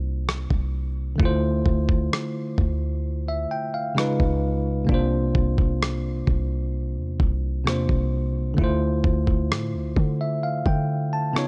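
A compressed, tape-warm, sampler-style soul drum kit sits up front with a thumpy kick and rim clicks, entering at 0.3 seconds in this sensual, moody contemporary R&B break cut from a longer piece. A bell-like, bright tine electric piano, clean and heard through its built-in speakers, moves through suspended and ninth chords over a deep, boomy 808-style bass with a mellow, decaying sine tone. The dry hardware recording has a gritty character and carries little reverb.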